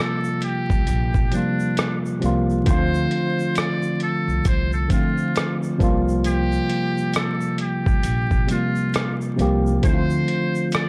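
A worn, slightly out-of-tune tine electric piano and a gritty, sampler-style drum kit with a thumpy kick, hi-hat and rim click sit up front as a distant, buzzy muted trumpet plays a jazz-style melody with light vibrato, opening this reflective, nostalgic lo-fi hip hop excerpt at a swung 67 BPM over C7sus4 and Dm7 chords, with a grainy tube shaker joining in the background at 0.2 seconds and a woody pizzicato upright bass entering at 0.7 seconds, all set in light reverb with a dry hardware sound and vinyl crackle.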